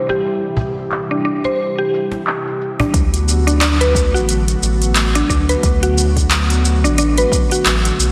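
Peaceful and warm, this short organic downtempo passage moves at 89 BPM in D mixolydian with a gentle 16th-note swing, as an airy, breathy pad with chorus and sidechain pumping holds sustained chords beneath a woody, mellow mallet-like synth pluck playing arpeggios through chorus, tape echo and slapback echo, its filter sweeping over the opening seconds. An up-front afro-pop kit of crisp hats, handclaps and shaker sits alongside a close, hard-handed cajon until 2.9 seconds, when a round sine sub bass and a deep, overdriven electronic kick arrive as the harmony shifts from C to D6. The whole mix is softened by a low-pass filter and bathed in a moderate concert-hall reverb that gives it a big arena sound.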